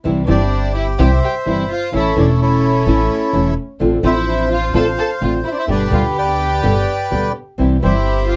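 Heard from further back in a short, wet booth ambience, this sultry, dramatic tango excerpt unfolds with a rubato feel over a chord cycle of C, A, Dm7/A, G and back to C. A reedy, close-miked bandoneon carries the melody up front over a dark, woody pizzicato upright bass, while a fingerpicked flamenco guitar accompanies from the opening and stops at 7.9 seconds. A warm violin section with gut-string tone adds a smooth second line, and a rich chamber string section plays soft-attack sul tasto stabs with light vibrato in the background.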